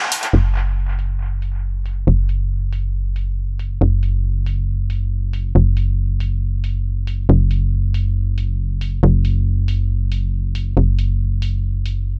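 Hypnotic and relentless, this excerpt of driving peak-time techno at 138 BPM in straight 4/4 pairs an overdriven, layered electronic drum kit, its crash cymbal and hi-hats softened by low-pass filtering and trailed by analog delay in a small room, with a tight, punchy sequencer bass on F#1 that sits up front, its sawtooth and square-wave tone edged with ring modulation and a fast-attack filter pluck, all inside a digital, echo-heavy ambience.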